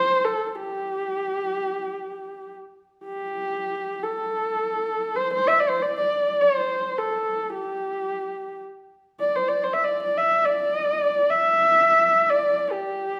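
This Mongolian traditional piece is a solo for horsehead fiddle, cut from a longer work, and it carries a proud, vast mood. It moves at 107 BPM in a straight 4/4, set in the G zhi mode. A single player bows the horsehair strings from 0.0 to 13.2 seconds, staying between G4 and E5 with a dark, woody, husky tone and a smooth top end. Vibrato and portamento color the line, and the fiddle sits up front in the mix. A recital hall reverb with a 1.3-second decay surrounds it, giving the lone instrument a spacious, resonant setting.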